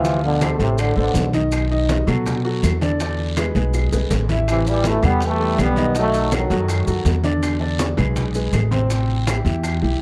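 Fiery and danceable, this salsa excerpt opens with a bright trombone section carrying the melody up front with light vibrato, falling silent at 1.3 seconds and returning at 4.5 seconds after a drum fill. Beneath it, a boxy concert grand piano with deep bass and long sustain accompanies, while a growly, woody pizzicato upright bass thumps up front. Ringing low-tuned congas hold the background, round bongos and distant claves sit back in a large room, and raspy guiro and grainy maracas add texture to a dry, close 1970s-style studio sound with light reverb.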